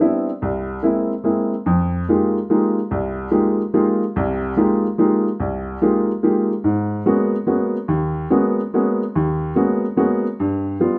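Intense and spiritual, this jazz excerpt from a longer piece moves at 144 BPM in a swinging 3/4, with the eighth notes swung at about 65 percent. A solo upright piano carries everything, its woody, open tone sitting up front with a short sustain and ranging from C2 up to G4. The harmony travels from C7b13 into Fm11 at 1.7 seconds, shifts to Abm11 at 6.7 seconds, and arrives on G7 near the close. A brief opening passage gives way to a longer second section that makes up most of the recording. Moderate studio reverb lends the piano a sense of space, with a decay of about one second.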